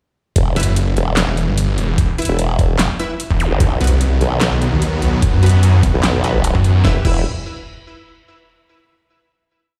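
This aggressive, menacing heavy wobble dubstep piece opens at 0.4 s straight into the drop, with a formant-sweep wobble bass, a knocking, tape-tinged electronic kick and a dubstep kit of huge snare, handclaps, metallic closed hats and crash, all in a swung half-time feel at 148 BPM in E harmonic minor. A snarling, growling distorted saw bass sits up front beside the wobble bass, its chopped, bright phrases answering the other bass's chorused, modulated lines, whose wobble speed keeps changing. Sparse, punchy orchestra-hit-like synth stabs in a bold power voicing echo through their own reverb and delay. A brief electronic zap marks the move from E minor to B, and at 3.6 s huge, lush supersaw chords enter in the background, pumping under sidechain compression. At 6.8 s the harmony returns to E minor for the final chord, as the dry mix rings out in a large, bare-room sound.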